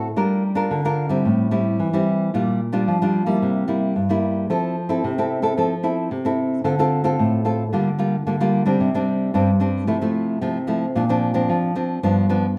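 Samba in a lively, playful mood, cut from a longer piece and carried by a solo nylon-string guitar that plays throughout. The fingerpicked guitar sounds full-bodied and classical, sitting up front with audible finger squeak, moving through jazzy seventh chords before the harmony turns toward a darker minor colour at 6.6 s. A wet, large studio reverb surrounds the guitar and lends it a roomy glow.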